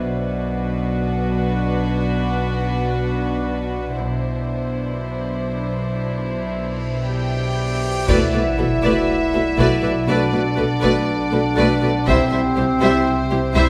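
A dark, glassy haze of bowed strings and ethereal glass harmonica opens this ominous, mysterious passage of suspense film score, set in B phrygian at a slow 60 BPM and heard on a moderate scoring stage reverb. Violin sections play sul tasto with soft attacks, one carrying a pure, floating melody and the other a rich, close second violin line beneath it. Behind them sit a dark viola accompaniment, a distant cello section and a woody double bass section with vibrato. Underneath, a vintage analog drone with chorus warbles and evolves. A huge cymbal swell rises from 6.6 seconds toward a sub drop at 8.1 seconds, and a mellow solo clarinet adds a second line from 7.1 seconds. At 8.1 seconds heavy-sticked taiko drums enter, close and dry, as the harmony moves from Bm and Cadd9/B to Bm7, then C, before the passage cuts off.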